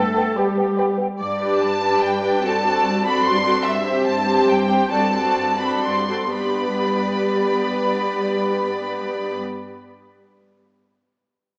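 Moving in a supple three-beat lilt with free, rubato timing, this graceful and cheerful classical passage is cut from a longer orchestral piece. In the opening second, a pure concert flute, a punchy clarinet in the background, a distant, roomy bassoon and a very quiet, mellow French horn section sound together before falling away. The rich viola section, up front, and a smooth, even cello section carry the accompaniment and bass throughout, while two violin sections enter at 0.4 s: one sings the intense, vibrato-laden melody and the other adds a lush second line. The harmony moves gently over a steady G bass, and the music slows between 3.0 and 6.3 s before settling back home. A scoring-stage reverb wraps the orchestra in a wet, spacious glow, though the overall sound comes through as if from a small speaker.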